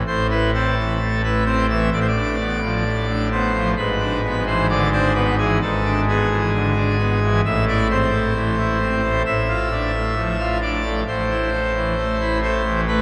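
Bathed in a wet cathedral reverb that rings for about 5.1 seconds, this grave, solemn excerpt of a classical chorale in A minor features a solo pipe organ on full organ with mixtures, up front, majestic and brilliant in its romantic voicing, moving at a rubato 66 BPM in 4/4 from Am through Bm7b5/A and E7/G# back to Am, then Dm/A, and settling on Am at 11.1 seconds.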